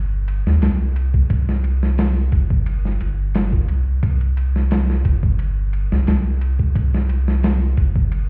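Heard muffled through a wall with stone room reverb and vinyl crackle, this brooding, smoky trip hop excerpt in C minor at 88 BPM pairs a deep, round, up-front dub sub bass with a gritty, compressed, pitched-down boom bap drum kit that enters at 0.3 seconds, its thumpy kick, medium-tuned snare, hi-hat and ride set in a small room ambience.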